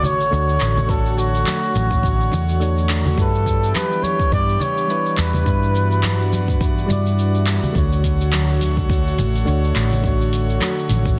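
A sunny, blissful sunset chillout cut opens at once with a flugelhorn melody over a bed of soft electric-piano-like synth keys, an airy, breathy pad holding sustained chords, a round, punchy hollow-body fingered electric bass, a deep house kit of handclaps, hi-hat and shaker, and congas. An electronic kick drum joins at 0.9 seconds, deep and layered, as the groove settles at 105 BPM in 4/4 with a light swing on the sixteenths, in D major. The flugelhorn, carrying vibrato and a soft attack, sounds distant and roomy yet sits up front with delay, in a classical-style solo that ends at 6.9 seconds. Beneath it, the mellow keys strike with a fast attack and decay with chorus, digital delay and a filter sweep, while the detuned, bright pad swells in slowly with chorus, and the dark, amped bass stays prominent in the mix. Close, dry congas struck with hard hands sit in the background as the harmony moves from Dmaj7 to G6 and back, all wrapped in light reverb and digital ambience with a dense, heavily limited modern master.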